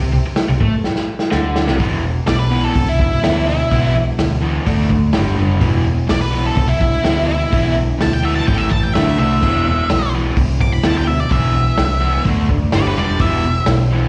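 Gritty and raw, this short excerpt of E minor garage rock at 126 BPM in a straight 4/4 pairs an overdriven, double-tracked rhythm guitar riff with slapback echo and a round, punchy hollow-body bass, while a muffled, lo-fi vintage drum kit with sampler grit enters at 0.4 seconds and plays a fill into a dark octave-fuzz lead guitar solo from 1.8 seconds, all heard as a live gig through the venue's PA with recital hall reverb and lossy compression artefacts.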